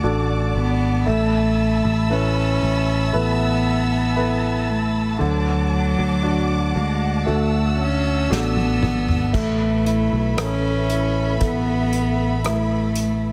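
Light reverb and a small-room ambience frame this tender, heartfelt pop ballad in A major at 58 BPM, where an intimate, airy-bowed cello carries the melody with light vibrato over a polished concert grand piano with audible action noise, a lush, distant string section holding sustained chords, and a growly, up-front picked electric bass, while an acoustic drum kit played with bundle sticks enters at 8.3 s with a fill leading into the new section at 9.3 s, the harmony moving between D and Asus2.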